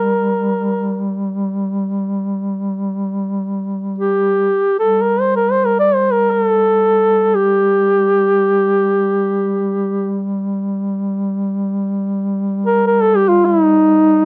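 Caucasian folk in free time and G minor, this short excerpt carries a longing, mournful mood from start to finish. Two dark duduks sound together for the full 14.2 seconds, one carrying the melody between Eb4 and D5 while the other holds a drone on G3 beneath it. The melody duduk sits clearly above the drone in level, both placed up front in a folk style with vibrato and scooped notes. The drone's soft attack and smooth top give it a rounded bed for the tune to rest on. The sound is dry and close, like a 1970s-style studio recording with a small room ambience around the reeds.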